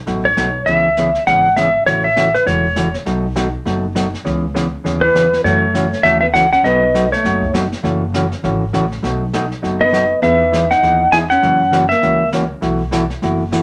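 A brisk swung 4/4 at 201 BPM drives this cheerful, down-home western swing piece, with a brushed jazz kit (high-tuned snare, punchy kick) and a woody, thumpy gut-string upright bass supporting a dark, up-front hollow-body jazz guitar that comps through chords such as C#m7, A6 and B7. A twangy, compressed lap steel carries the melody in short slide phrases with volume swells, entering at 0.3 s and sitting up front. A vintage picked hollow-body guitar adds a second line from 5.0 s and again at 9.8 s, and the whole is set in a short studio reverb.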